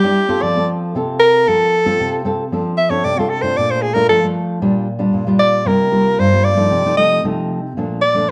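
A clear soprano saxophone and a dark, full-bodied, fingerpicked nylon-string guitar, both up front, open this joyful, lively samba cut from a longer piece, the guitar's classical accompaniment carrying finger squeaks under chords moving from F through Bbmaj7 and C7sus4 while the saxophone, jazz-style with vibrato, subtone and scooped notes, takes a solo from 2.5 seconds, the pair sitting in a moderate large-studio reverb with a warm production.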